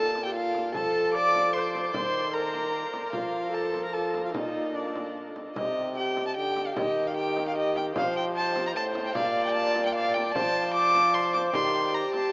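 Courtly and rustic, this excerpt of a renaissance-style consort dance in 3/4 sets a reedy, gut-string solo violin up front on the melody above a smooth-topped bowed viola on the second line, with a clear, punchy trombone carrying the bass with light vibrato and a small, bright frame drum played with soft hands in the background from 0.2 seconds, the ensemble bathed in a huge, wet reverb that suggests a vast, echoing space yet comes through with a small-speaker sound.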